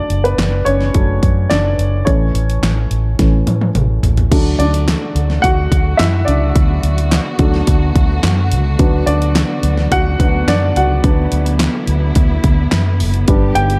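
A dark, woody upright piano opens this anthemic, uplifting piano-driven pop excerpt, joined almost at once by a round, foam-muted fingered electric bass and a punchy, layered pop drum kit with handclaps, whose fill from 3.2 s leads into lush bowed strings with vibrato and portamento at 4.3 s, while the up-front piano carries the solo throughout under light reverb.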